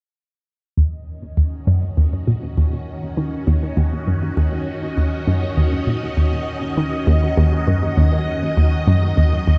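A hollow, bouncy square-wave pluck sits up front from 0.8 s, playing a detuned riff with a fast attack and tape echo while a filter sweep runs across it, in mysterious, cosmic sequencer-driven space music at 100 BPM in a straight 4/4 over a D#m7 chord. Beneath it a vintage string machine fades in with swirling, warbling sustained chords, its bright sawtooth tone coloured by ensemble chorus and phaser. From 1.0 s a resonant, bubbling texture of random filter steps fades in far in the background, and a cathedral reverb places this excerpt in a vast, echoing space.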